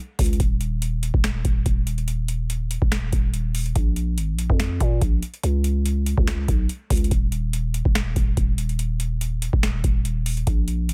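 A booming analog drum machine drives this dark, menacing trap cut, its deep kick, crisp snare, metallic hats and finger snaps overdriven and pushed up front with a half-time feel, carrying the faint character of a small room. Alongside it, a growling, buzzy 808-style bass with a fast attack and decaying tail rumbles across a range of Eb1 to Bb2, both parts running together from 0.2 seconds to the end. The mix is dry, dense and heavily limited, giving this short fragment a hard, modern punch.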